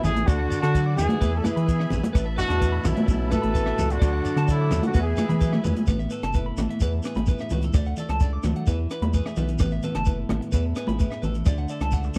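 A straight 4/4 groove from a compact cocktail drum kit with a tight kick, high-tuned ringing congas and a grainy shekere drives this danceable, carefree highlife guitar band excerpt, with a rubbery, bouncy square bass sitting up front. A warm horn section carries the melody with light vibrato while a raspy tenor saxophone plays a second line in the background, both stopping at 5.6 s, and a very quiet musette accordion holds shimmering chords until 5.9 s. Picked arpeggios on a clean electric guitar and a slightly broken-up, compressed guitar with subtle chorus continue through the dry, close 1970s-style studio sound, over chords cycling through D, E and Asus2.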